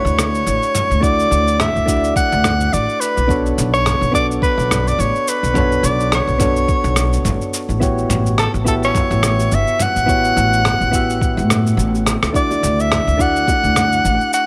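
Smooth and warm, this sunset chillout fragment swings gently, with an up-front soprano saxophone carrying a jazz-style solo melody in a warm subtone, with light vibrato, scooped notes and a touch of delay. Mellow electric-piano-like synth keys, warbling with chorus and vintage sampler grit, sit beneath it over a woody, growly pizzicato upright bass. A gritty, overdriven sampler-style kit of rim clicks, shaker and toms pairs with a soft electronic kick from 1.0 s, and after a drum fill at 12.1 s, very quiet low-tuned bongos appear at 12.5 s, all in a light small-room ambience.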